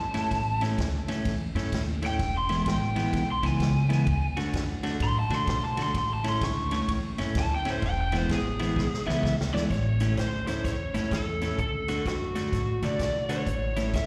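Electric blues shuffle at 128 BPM in A major, gritty and laid-back, heard as a live gig through the venue's PA with recital-hall reverb, cut from a longer piece. A dark, lo-fi lead guitar through a small cranked amp, overdriven and picked with slapback echo, takes a solo from the start until 9.7 seconds, over a slightly broken-up, fingered rhythm guitar riff that also carries slapback, a woody, thumpy pizzicato upright bass on gut strings, and a distant, roomy big-band drum kit with a punchy kick and rolled-off top. The drums play a fill from 8.8 seconds that leads into a new section moving from A to D and back to A.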